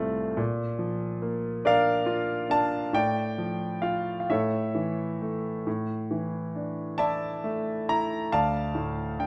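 Melancholic and reflective, this short classical excerpt cut from a longer piece features a lone concert grand piano playing lyrically in a slow, rubato 6/8, around 43-48 BPM counted in dotted quarters. The piano sounds clear and natural and sits up front, with deep bass and long sustain, ranging from C2 to Bb5 in a moderate recital hall reverb of 1.4 s. The harmony moves from Bb through Dm/A, A and Asus4 before settling on Dm at 8.3 seconds.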